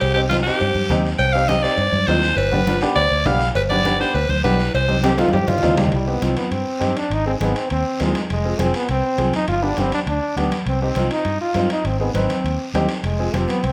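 A raspy, gritty alto saxophone leads this fiery, driving cumbia excerpt up front, with light vibrato and a slapback echo as it carries the melody in C harmonic minor at a brisk 203 BPM in straight 4/4. Beneath it, a dark, round, foam-muted electric bass sits forward, while a woody, slightly detuned upright piano adds intimate accompaniment with audible action noise and short sustain. Thick-skinned congas and ringing cowbell and timbales sit in the background, and a distant guiro adds texture, all within a moderate large studio reverb. At 5.0 seconds the saxophone drops out as a drum fill arrives and a brilliant, punchy trombone enters. From 5.9 seconds the trombone takes a forceful solo over Cm, Ab, Fm and G chords.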